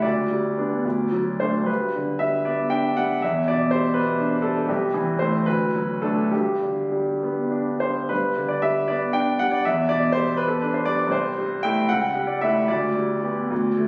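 A bright baby grand piano opens on a G/D chord and carries this passionate, lyrical romantic character piece alone in G major, in a rubato 6/8 at 66-85 BPM, stating its main section twice with the second pass beginning at 8.1 seconds, its open, long-sustaining tone sitting up front in a wet recital-hall reverb captured on a phone in the room, all within a passage cut from a longer piece.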